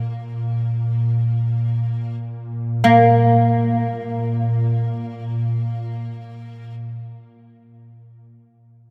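The oud carries the melody, its plucked, woody tone deep and up front, with the doubled strings giving each note a fuller ring. This brief excerpt, cut from a longer Caucasian folk lament, moves in free time with a solemn, longing mood. Beneath it, an ethereal pad holds a drone on Bb2 from 0.0 to 6.7 seconds, its airy, detuned voice thickened by ensemble chorus and its own reverb, with a slow attack and a long release. The opening passage slows down through its first 2.8 seconds before a second section takes over. The whole performance sits in a vast, echoing space, where a cathedral reverb with a 5.5-second decay lets every note hang in the air.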